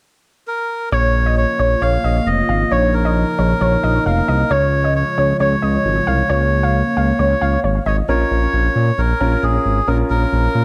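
A straight 4/4 pop pulse at 134 BPM in Db major carries this wistful, nostalgic excerpt, with a reedy, breathy melodica playing the melody up front from 0.5 seconds. From 0.9 seconds a smooth, up-front synth bass, a shimmering retro pad holding dark sustained chords in the background and a warbling, lo-fi pluck on a second line move from Bbm to Db. At 8.1 seconds a clear, intimate grand piano with audible action noise enters with accompaniment, all in an echo-heavy mix with light small-room reverb and analog delay on the melodica, pluck and piano.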